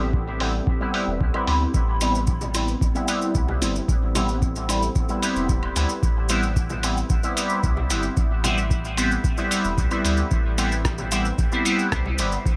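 A straight pulse from a deep, tape-softened electronic kick drives this hypnotic, hazy dub techno fragment, with a muffled, pitched-down sampler kit adding hi-hat and rim click, overdriven woodblock and congas sitting in the background under dub echo, and grainy, vintage maracas joining at 1.7 seconds. Up front, a juicy, detuned polysynth fires resonant stabs through chorus, phaser and dub echo while a filter sweeps across it, all riding on a single Am9 chord. Beneath, a round, soft sub bass with tube saturation and a moody, evolving pad with built-in reverb pump with sidechain compression, set in a light reverb with bright 1980s-style digital sheen.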